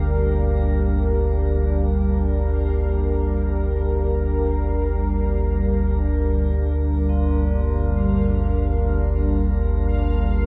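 A deep, rumbling drone sits up front in the low register, anchoring this ominous, desolate dark ambient piece in G minor, which drifts in free time and is cut from a longer work. Above it, a moody, warbling pad holds sustained G minor chords with chorus and shimmer reverb, while distant tubular bells ring solemn, metallic arpeggios through tape echo and a resonant, bubbling texture of random filter steps hovers in the background. A huge reverb and dark, warm production give the whole 10.5 seconds a cavernous, foreboding atmosphere.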